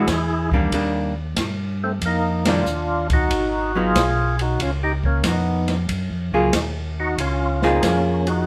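A swung 4/4 groove at 93 BPM drives this short, soulful soul jazz organ trio passage, where a percussive, overdriven tonewheel organ carries the melody through a slow rotary speaker, a dark, clean, picked hollow-body archtop guitar comps up front, a mellow, round organ with key click plays the bass line, and an acoustic drum kit with boomy kick and dark cymbals enters at 0.1 seconds, all in moderate studio reverb over chords moving from E7 to Gbmaj9, with a band accent at 2.3 seconds.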